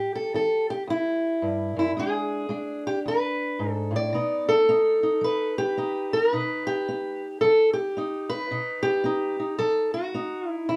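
Acoustic country blues with a swaggering, laid-back swing at 110 BPM, this short cut from a longer piece features a solo fingerpicked steel-string parlour guitar, dark and boxy and sitting up front in a small, reverberant room, moving through A7, E7 at 2.0 seconds and B7 at 4.1 seconds across a range from E2 to D5.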